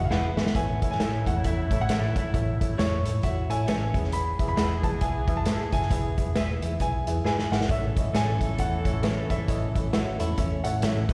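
Two pianos open this short cut from an uptempo, 1960s-style soul number: a baby grand carries the high melody with short sustain, and a dark, woody upright gives worn, slightly detuned accompaniment, both touched by slapback echo. Alongside them, a muted fingered electric bass sounds round and amped, while a clean, compressed electric guitar plays a twangy riff in the background and a very quiet tonewheel organ adds soft, flute-like sustained chords with key click and fast rotary speaker. A drum fill on the vintage kit, with its punchy kick, medium-tuned snare and hi-hat sitting up front in a pumping small room, leads into the main section at 0.6 seconds, where a tight, jazz-style horn section with light vibrato enters on a second line. A bright, slightly broken-up guitar through a small old amp adds lo-fi picked stabs with analog chorus throughout, the clean riff guitar drops out after 4.1 seconds and returns near the end, and the organ comes back at 7.7 seconds after a second drum fill. 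The swung feel makes it danceable, and the whole thing is heard as a live gig through the venue's PA, with light recital hall reverb.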